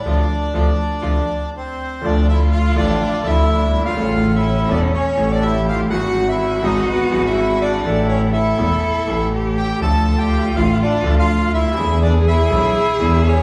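A wet recital-hall reverb with a 1.6-second decay surrounds this tense, sultry tango excerpt, though the reedy, full bandoneon sits close-miked, dry and up front as it carries the melody in D minor at 123 BPM in a rubato 4/4. Beneath it, a bowed cello plays a close, expressive second line with vibrato, portamento and a soft attack. A clear grand piano supplies the accompaniment across a broad range, while a single bowed double bass, warm and up front, anchors the bass with its own vibrato and sliding portamento. The band marks an accent together in the opening seconds before the music moves into a new section at 2.0 seconds. The harmony there travels from D minor through A and E/G# to a Dmadd9, and the passage ends on an E7 as it is cut off from the longer piece.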